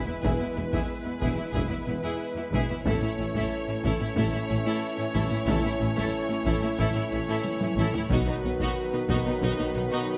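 A lush scoring-stage sound with moderate reverb carries this triumphant, adventurous cinematic excerpt at 91 BPM, where a smooth, vibrato-rich violin melody rides over a second violin line in the background, a close viola accompaniment with portamento, sustained chords from bright trombones and dark, distant French horns, a bass of cellos, double basses and a very quiet tuba, and heavy-stick taiko drums with a vintage, band-limited tone. The harmony moves from E to A, and the taiko play a fill at 7.5 seconds just before it arrives on B.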